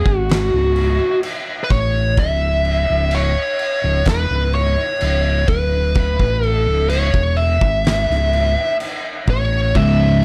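A fuzz lead guitar, run through wah, distortion and slapback echo, carries a compressed melody up front over a round, overdriven fingered bass on a C#m chord in C# phrygian, while an oversized low-tuned drum kit with a punchy kick, fat snare, dark cymbals and a pumping stone-room sound plods at 63 BPM in this brooding, ominous stoner and doom metal excerpt, with two thick fuzz guitars entering on a picked riff only at 9.8 seconds.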